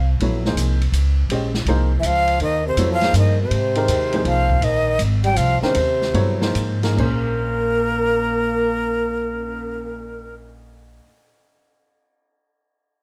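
A swung jazz waltz in 3/4, running between 138 and 163 BPM, gives this short modal jazz excerpt in Bb dorian a spiritual, intense character, and it slows down from 4.6 to 7.0 seconds before the opening Bbm9 harmony returns. A breathy, bright metal flute carries the melody, close-miked and up front with expressive vibrato and a soft attack. Beneath it, a trombone in a bucket mute plays a veiled, mellow second line with vibrato and scooped notes, sounding distant and roomy. The pizzicato upright bass is woody and prominent, while a warm upright piano with short sustain supplies the accompaniment, moving between Bbm9 and Ab6 chords. An open acoustic drum kit sits low in the mix with dark cymbals, a medium-tuned snare and a boomy kick, and stops at 9.5 seconds. Light reverb and a small-room feel keep the sound natural and intimate.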